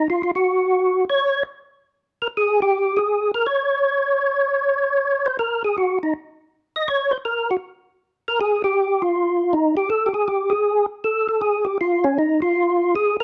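Swung eighth notes drive this brisk 4/4 jazz passage at 159 BPM, carrying a soulful, bluesy mood. A lone percussive tonewheel organ carries the whole piece from 0.0 to 13.2 s, placed up front and ranging from Db4 to Eb5. Its fat, lightly overdriven tone has third harmonic percussion and audible key click, with chorus vibrato and a slow rotary speaker adding gentle motion. The opening section runs to 11.8 s, when the same material starts again just before the cut. Light reverb and a dark, warm production surround the organ in this short clip from a longer performance.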